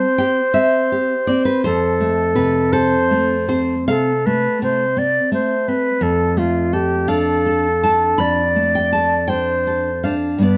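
Tender and lyrical, this short excerpt from a romantic duo in a rubato 12/8 sets a pure, straight-toned concert flute with tongued notes between F4 and D5 over a full-bodied, fingerpicked nylon-string guitar with fresh strings and audible finger squeaks, both sitting up front through all 10.6 seconds in a dry, close studio sound with a touch of reverb as the harmony moves from C to F and then Dm/F.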